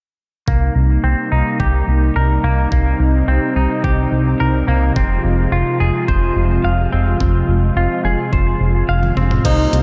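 A fat, thick analog bass sits up front in this driving, nocturnal synthwave excerpt in C minor at 107 BPM, its detuned sawtooth tone roughened by tube saturation as a filter sweep runs across it from 0.5 to 9.4 seconds. Beneath it, an overdriven electronic kick drum knocks in straight 4/4, while a smooth, warbling analog pad holds sustained chords with lush chorus and sidechain pumping, moving from Cm7 to Fm at 5.0 seconds. A bright, clean semi-hollow electric guitar plays compressed arpeggios through spring reverb, analog delay and a low-pass filter. A gated 80s digital drum machine adds a fill of toms, hi-hat and crash cymbal from 9.0 seconds. At 9.4 seconds a breathy, intimate tenor saxophone with vibrato and sampler grit enters on Eb4 alongside natural, clear grand piano stabs, all set in light digital ambience.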